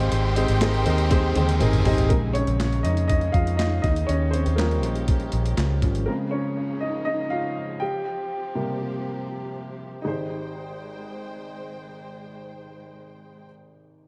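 This uplifting, anthemic piano-driven pop excerpt opens on an Abmaj7 chord with several parts at once. A woody, up-front upright piano plays accompaniment. Bowed studio strings hold sustained chords, and a lush, distant violin section carries a second line. A bright, double-tracked overdriven guitar riff sits in the background over a round, foam-muted vintage electric bass. A gritty, pitched-down boom bap sampler-style kit enters almost at once, with a thumpy kick, high-tuned snare, handclaps, hi-hat and toms, and it plays a drum fill before the violins and guitar stop at 2.1 seconds. From there the piano takes a solo over Bbm7, Eb7 and C7sus4 changes in Ab major at 121 BPM in a straight 4/4, while the bass and drums drop out at 6.1 seconds. The closing stretch returns to Abmaj7 with only the smooth vintage piano and vibrato strings, and dub echo on the piano, violins and guitar makes for an echo-heavy mix in light small-room ambience.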